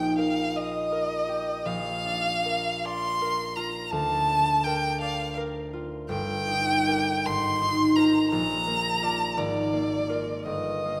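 Bathed in the wet reverb of a scoring stage, this serene, lyrical romantic classical passage in 6/8 at a slow 55 BPM, with a freely flexing rubato, sets a rich, focused solo violin singing its bowed melody with vibrato high above a bright, ringing fingerpicked concert harp accompaniment, both up front, as the music moves from Bb major into Eb major at 6.1 seconds.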